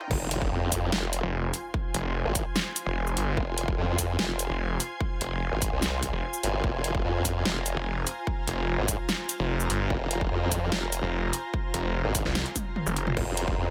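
Heavy and menacing, this heavy wobble dubstep excerpt sits at 147 BPM in a half-time 4/4 feel, in F minor, and stays on an F minor chord throughout a single drop. From 0.1 seconds a formant-sweep wobble bass churns up front with a detuned sawtooth-and-sine tone, chorus and overdrive, joined at 1.2 seconds by a snarling distorted saw bass whose growling, unison grind carries a moving notch. A punchy electronic kick and a big-room dance kit with a huge snare, metallic hats, shaker, toms and crash drive the groove, the kit up front and high-pass filtered, with a drum fill arriving around 12.6 seconds. Above it, an ethereal, airy pad drifts between F4 and C6 with slow attack, ensemble chorus, built-in reverb and sidechain pumping, while a faint electronic impact marks the opening moments. At 13.2 seconds a very quiet, lush bowed string section enters with sustained chords just as the fragment closes, all in a dry mix.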